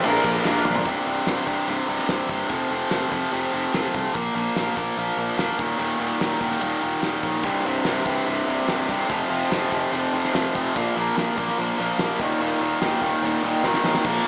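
A straight 4/4 pulse at 146 BPM drives this confident, swaggering classic rock excerpt, where an up-front, bright distorted guitar riffs throughout over a cloth-damped, thuddy drum kit with dark cymbals and a fat snare, and a round, foam-muted fingered bass sits in the background; a double-tracked cranked stack guitar with overdrive and slapback echo sounds only in the first 0.9 s, while a raw garage guitar with the same treatment returns at 7.4 s, the mix bathed in a lush hall reverb for a big arena sound as the power chords cycle through C5, F5, Bb5 and Eb5.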